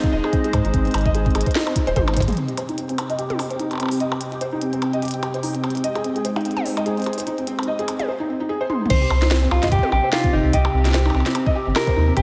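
A melancholic, intricate IDM passage in C minor at 147 BPM with a light 16th-note swing opens on a dark, clean fingered electric guitar melody carrying sampler grit and tape echo over a hollow, flute-like pad, felt-muted piano arpeggios with boxy tone and audible action noise, a soft electronic kick, a glitchy kit of tiny snare, clicky hats, toms and blips, and a round sine sub bass up front. The guitar drops out first, then the kick and bass fall away during a drum fill that ends at 2.4 seconds. Filter sweeps shape the pad and piano and a faint flickering granular texture appears, until the kick, bass and guitar return at 8.9 seconds, all set in a lush hall reverb with a big arena sound.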